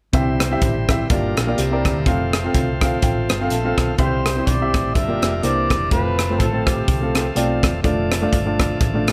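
A faint mains hum sits under this lightly reverberant recording, cut from a longer piece of uptempo gospel with a swung, soulful and hopeful feel. A woody, boxy upright piano with long sustain carries the accompaniment up front, beside a full, shouting tonewheel organ that holds sustained chords through light overdrive and a stopped rotary speaker. Underneath, a dark, round hollow-body electric bass plays fingered lines, while a punchy, gritty drum kit in a small, pumping room drives the groove with hi-hat, kick drum and rim click. From 3.5 to 7.4 seconds a breathy, distant trumpet takes a jazz-style solo melody, its soft attack, scooped notes and vibrato giving it a whispered, intimate quality. The harmony circles through C, Gm7, C9 and F, closing on Dm/F near the end.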